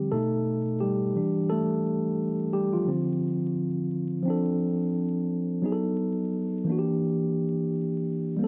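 A mellow tine electric piano plays solo and up front for the whole 8.5-second clip, its clean tone filtered through a low-pass and heard as if through built-in speakers. This melancholic, hazy hip hop fragment moves at 87 BPM in 4/4 with a 60% swing on the sixteenths. It sits in D minor, tuned to A4 = 441 Hz, and drifts through chords such as B7, Fmaj13/E, Dm7 and Em7b5, with a second phrase beginning at 4.3 seconds. Light reverb and a bed of vinyl crackle surround the cut-down passage.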